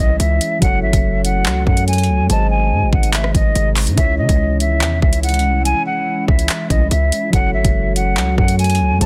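A dense, heavily limited modern mix with a digital ambience frames this ominous, tense drill cut, a short piece taken from a longer track and moving at 143 BPM in a half-time 4/4 feel in C# harmonic minor. A hollow, airy concert flute carries the melody, close-miked with a crisp attack and vibrato, its tone softened by a low-pass filter, over a mellow, clean tine electric piano that also sits behind a low-pass filter. Deep in the background, a glassy, ethereal FM pad holds dark sustained chords with a slow attack and long release, dressed in ensemble chorus and its own reverb. Up front, a punchy, heavy sine 808-style bass with a noise layer and fast, decaying attack drives the low end, while an electronic drill kit from 0.2 seconds brings a knocking kick, metallic hi-hats, handclaps and rim clicks with a tape-warm edge. A barely audible downlifter sounds in the opening 0.6 seconds as the harmony moves through C#m, F#m and G# before returning to C#m and F#m.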